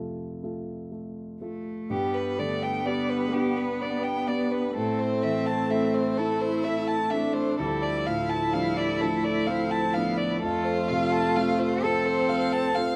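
Neoclassical piano and strings, cut from a longer piece, moving at a slow, rubato 42 BPM in 6/8 with a longing, fragile mood. A concert grand with a deep bass opens alone on an F chord, and a single bowed cello enters at 1.4 seconds with a focused, vibrato-rich second line. At 1.9 seconds the harmony moves to G as a lone violin takes the melody up front, its tone smooth and even yet slightly distant, while a viola adds warm, vibrato-touched accompaniment in the background. A very quiet pedal harmonium joins at the same moment with reedy, breathing, dark sustained chords beneath the strings. The progression passes through A minor and D minor before returning to F, all set in light reverb and studio ambience with the rough feel of a home demo mix.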